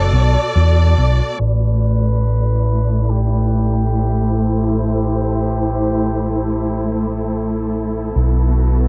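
Ambient dub at a slow 71 BPM in A dorian, spacious and meditative, with a gently swung sixteenth-note feel, drifting from Bm7 to Am9 at 1.4 seconds and landing on a bare B7 chord at 8.2 seconds in this short cut from a longer piece. A dark, round fingered electric bass sits punchy and up front, while a studio string section holds bowed chords with expressive vibrato, portamento and a smooth top. Alongside them, a cup-muted trumpet plays a soft, veiled, classical-style melody that sounds distant and soaked in dub echo, ending at 7.7 seconds, all within an echo-heavy, low-pass filtered mix and a small room ambience.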